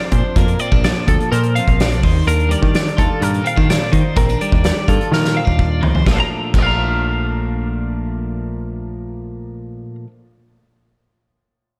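This bright, intricate slice of math rock and midwest emo moves in a straight 4/4 feel, cut from a longer piece. Two clean, compressed twelve-string electric guitars carry the harmony: one plays twangy accompaniment through the full span, while the other spins high, bright arpeggios shaded by a harmonic tremolo. A picked electric bass sits underneath with a warm, direct tone, moving from Bb through Ebmaj9 before the music settles onto Bbmaj7 at 6.1 seconds. The loose indie drum kit sounds roomy yet up front, with a punchy kick, fat snare, dark cymbals and toms, and it plays a fill from 5.1 seconds before dropping out at 6.7 seconds, leaving the guitars and bass to ring on. A lush hall reverb gives the whole band a big arena sound.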